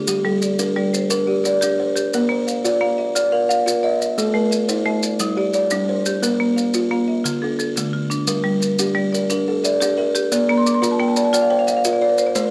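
Southern African traditional music in the mbira style, this short excerpt from a longer piece builds a rippling, warm interlocking cycle at 117 BPM in a straight 12/8, tuned to a G equiheptatonic scale. A buzzing kalimba sits up front, its thumb-plucked arpeggios ringing with a woody, airy rattle, while a marimba struck with hard mallets adds bright, percussive arpeggios from close and dry. Grainy, mellow maracas add percussion beneath them from the opening moments. The harmony moves through Gm, Bb and Am, returns to Gm, then passes through a Bb5 and Dm before the second section arrives at 8.3 seconds, and the marimba breaks into a fill from 10.3 seconds. A light reverb and the soft wear of a home cassette recording give the whole a homemade intimacy.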